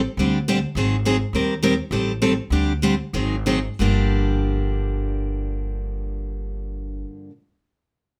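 A swung 4/4 pulse drives this brief cut from a longer piece of acoustic string swing in the jazz manouche style, and the pace slows between 1.3 and 3.8 seconds. The mood is bittersweet yet swinging, set in a minor key. A pizzicato upright bass with gut strings anchors the low end with a woody, thumpy tone. Above it, a picked steel-string acoustic guitar sits up front as accompaniment, its fresh strings sounding bright, with a touch of finger squeak. The harmony moves through D7sus4, Ab7, Eb6 and Am7b5, repeats part of that turn, and lands on Gm7 at 3.8 seconds as a second section begins. A light reverb gives the pair a modest sense of space.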